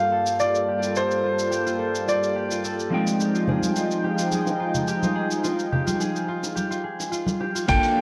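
A bright grand piano melody with tape echo opens this smooth, relaxed sunset chillout excerpt at 107 BPM over a clean, dark electric guitar, a lush detuned pad with chorus and a filter sweep, and a ringing fingerpicked harp through a low-pass filter and delay. Gritty sampled shaker and hi-hat enter just after the start, the harmony moves from Gm9 to Fm9, soft-handed congas and bongos join at 3.5 seconds, and a round analog bass and thumpy kick drum land together at 7.7 seconds, the mix set in a spacious hall reverb with warbling cassette-tape wear.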